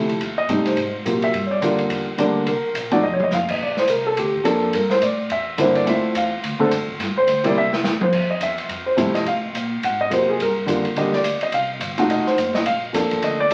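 A brisk, swinging jazz piano trio excerpt in F major at 212 BPM, where a dark, mellow grand piano sits up front carrying the solo melody from the first moment, over woody pizzicato upright bass and an airy acoustic drum kit with dark cymbals and a boomy kick that adds fills at 3.0 and 7.6 seconds, all heard through a generous studio reverb and the crackle of a very old 78 rpm record.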